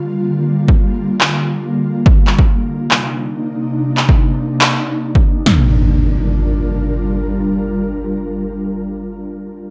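An ethereal, airy pad opens this bittersweet, emotional future bass excerpt, its detuned sawtooth and triangle unison voices spread through ensemble chorus and built-in reverb, with a slow attack, long release and sidechain pumping that make the sustained chords breathe. Set in G minor at 141 BPM in a half-time 4/4 feel with a light 16th-note swing, the pad moves from Gm7/D to Cm9 and later settles on Gm7. A big-room dance kit of punchy kick, snare and toms arrives at 0.7 seconds, overdriven and layered, re-recorded in a large room and sitting up front in the mix. Electronic handclaps, also overdriven and carrying that large-room sheen, join shortly after and drop away before the kit does. At 5.5 seconds an electronic impact hits as the music turns to Gm7, ringing out alongside the pad until the close at 9.1 seconds, all under a light reverb.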